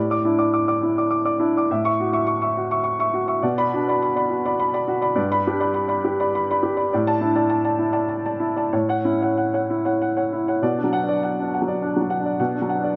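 A clear, woody upright piano plays alone and up front through this wistful, reflective neoclassical minimalist fragment, cut from a longer piece, in B minor at 103 BPM in 3/4 with a rubato feel. Its harmony moves from Asus4 through F#m7/A and Bm to G, then returns to Asus4 and F#m7/A before arriving back on Bm at 10.6 seconds, where a new section begins. The piano spans G2 to D6 and is captured by close, detailed microphones in a moderate recital hall reverb.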